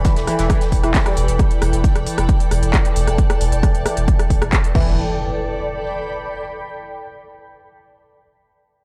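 An up-front, overdriven electronic kick drives this short cut of intense, relentless peak-time techno in E minor at 134 BPM, joined by a deep, thick saturated sub bass, a resonant wave-folded drone with moving overtones under chorus and phaser, and a cloudy granular pad that lingers to 6.7 seconds. A screaming, gritty synth lead with vibrato and digital delay cuts in briefly at the start and again at 4.8 seconds, while an overdriven techno kit of smooth hats, handclaps, rim clicks and crash adds drive, and an airy jazz brush kit with hi-hat and snare sits in the background for the opening 1.3 seconds. At 4.8 seconds an electronic impact lands as the harmony moves from Em through E7sus4 to A9sus4, all wrapped in a dark production with light digital ambience.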